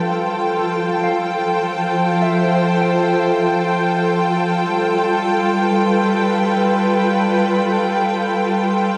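Ambient and weightless in free time and F Lydian, this warm excerpt from a longer piece sets an up-front, woody, bowed string section holding soft-attack chords with light vibrato from Fadd9 to G7 at 4.7 seconds, while a mellow, clean, fingered electric guitar fades in underneath with arpeggios wrapped in lush chorus and diffuse ambient delay until 5.2 seconds, all of it bathed in a huge ambient reverb.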